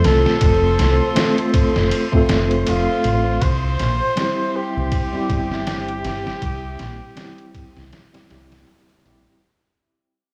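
A veiled, bucket-muted trumpet carries a jazz-style solo melody with light vibrato and tape echo over a hypnotic, dark trip hop groove at 80 BPM, swung on the sixteenths and moving from F to C at 3.4 seconds. A tine electric piano adds mellow accompaniment with tremolo and 12-bit sampler grit, while a deep, round fingered dub bass with transformer saturation and a muffled, pitched-down sampler drum kit with thumpy kick, snare and ride sit up front. A warbling, nostalgic pad with chorus and phaser hovers in the background, joined by a very quiet, breathy wind-like noise texture from 0.3 seconds, and the whole gritty, vinyl-crackled fragment fades out from 1.4 seconds.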